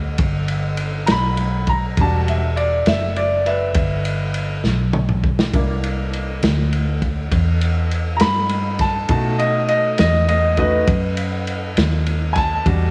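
A big arena sound with lush hall reverb frames this soulful, mournful slow blues fragment in 12/8, where a clear, woody upright piano with slapback echo takes the solo over a round, foam-muted vintage electric bass and a gritty, saturated breakbeat kit with dark cymbals and a punchy kick that plays a fill from 4.7 to 5.5 seconds as the chords move from Em7 through C7 to B7.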